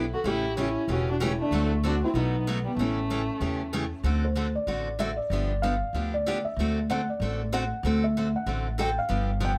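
A recording with light reverb captures lively, charming acoustic string swing in the jazz manouche style, cut from a longer piece and moving at 190 BPM in 4/4 with a swung eighth-note feel. A bright, picked steel-string acoustic guitar with audible finger squeak carries the accompaniment, and a thumpy, woody gut-string upright bass plucks the low end, both up front. A mellow, intimate felt-muted upright piano with tape echo takes the melody, while a bowed violin, also with tape echo, adds an expressive second line with vibrato and portamento until 3.7 seconds; the piano then solos from 4.0 seconds over D7, G7 and D7 chords.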